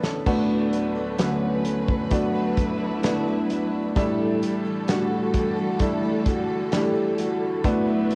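A grand piano with a smooth, vintage tone and long sustain sits up front in this heartfelt, tender pop ballad excerpt, carrying the accompaniment at a slow 65 BPM in D major. A loose indie drum kit opens on a fill at the very start, its fat snare and tight kick sounding from a small room with a rolled-off top and a tape-worn cassette character. Alongside them, a lush symphonic string section holds sustained bowed chords with vibrato and a soft attack. A bright, full-bodied jumbo acoustic guitar picks arpeggios further back. At 0.3 seconds a dark, distant French horn section enters with a classical-style second line, as the harmony moves from D6 to A7sus4 at 4.0 seconds, all within the moderate reverb and homespun feel of a cassette recording.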